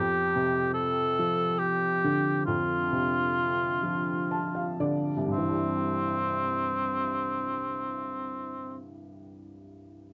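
A dark, warm production with light reverb frames this intimate, tender fragment of an acoustic folk-pop ballad in C major, moving slowly in 6/8 at 39-49 BPM and slowing down through its first 5.3 seconds. Up front, a mellow cor anglais sings the melody in classical style with light vibrato and a smooth top, over a woody, slightly detuned upright piano whose vintage tone carries long sustain. The harmony rests on Dm7/F before settling on C at 5.3 seconds, and the cor anglais falls away at 8.9 seconds, leaving the piano to ring on alone until 10.1 seconds.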